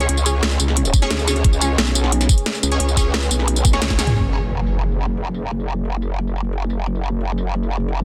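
Aggressive and dark, this is a short cut of technical drum and bass in a straight 4/4 drop, with a dense, heavily limited modern master and light reverb. Up front, a growling, wobbling growl bass carries detuned, saturated tone through a formant filter and chorus, while the drum kit brings a cracking snare, metallic hats, crash cymbal, tambourine and toms with a tape-tinged, small-room character. A knocking electronic kick joins at 0.9 s and drops out at 4.0 s, as a drum fill and band accent close out the opening stretch. A bold, punchy orchestra-hit-like synth stab, bright and gritty with a filter sweep, phaser and digital delay, fires through the first half before stopping at 4.1 s. In the background, a deep, moody pad of detuned sawtooth and sine layers sustains chords with a slow attack, chorus and sidechain pumping, and an electronic impact marks the shift into the second half at 4.2 s.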